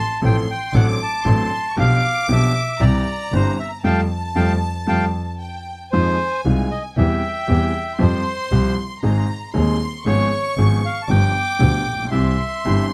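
A dark, bowed double bass sits up front in this sultry, dramatic tango fragment, its single player holding a smooth, even tone with vibrato. Above it the bandoneon carries the melody with a reedy, vintage, band-limited voice. A studio violin section traces a second line that is intimate and close, with light vibrato, a soft attack and tape echo. A baby grand piano with a natural sound supplies the accompaniment, and the feel stays rubato throughout. The band lands a shared accent between 3.8 and 5.9 s, and at 5.9 s the harmony darkens from Fadd9 to Fm7 before moving through Ab and Db7/Ab toward G7 and C, all heard through light reverb and close, detailed miking.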